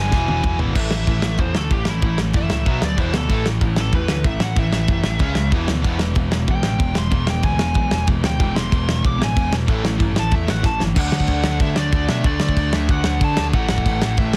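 This dense, heavily limited punk rock clip sounds dry, with very little reverb, and it carries a rowdy, rebellious mood in a straight four-beat drive. A loose indie drum kit sits up front with a small-room feel, dark cymbals, a medium-tuned snare and a tight kick, and it opens with a quick fill. An overdriven picked electric bass adds a growly, punchy low end beneath a bank of rhythm guitars playing riffs: a compressed, dark guitar and a raw, double-tracked garage guitar in the background, plus a very quiet, bright distorted guitar that drops out at 10.9 seconds. From 0.8 seconds, a biting lead guitar with a warm overdriven tone plays a solo across a high range. Just before 11.0 seconds, a drum fill leads into a new section built around a shift to D before the clip cuts off.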